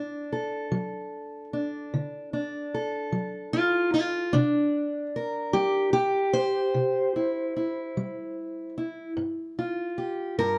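Acoustic country blues in a slow 12/8 at 50 BPM, this short excerpt from a longer piece feels rollicking yet soulful. A lone fingerpicked steel-string acoustic guitar carries the whole recording, sitting up front with a boxy, parlour-sized tone that spans from G2 up to C5. The harmony moves from D to C7 at 4.3 seconds and lands on a G7 with its third omitted at 9.2 seconds before the clip ends at 10.6 seconds. A moderate studio reverb gives the guitar a modest sense of space, and the production leans dark and warm overall. The tuning sits slightly under standard pitch, at A4 = 439 Hz.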